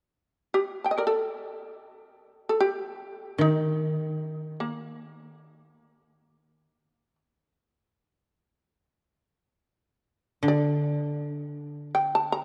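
A shamisen begins the excerpt at 0.5 s, its plectrum-plucked, fretless tone sounding percussive, buzzing and powerful as it carries the melody across a range from D4 to Bb5. At 3.4 s a koto enters in accompaniment, played with fingerpicks in a low, narrow range, its mellow, woody voice sitting dry beside the shamisen. Both instruments are acoustic and placed up front, and both play on until the passage breaks off at 12.4 s, a fragment cut from a longer work of Japanese traditional chamber music. The production is dark and warm, bathed in a long, wet church reverb that gives the plucked notes a lingering halo. The mood is austere and meditative, unfolding in free time as a single section.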